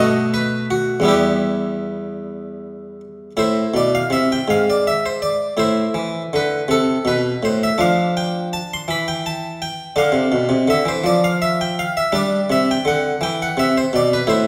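A round, full Italian-style harpsichord strung with a single set of strings plays alone through this short baroque-style suite movement excerpt, its plucked tone close and up front within a reverberant recital hall as it unfolds a flowing, introspective 6/8 with free rubato, moving through minor harmonies before settling on a major chord at 13.2 seconds.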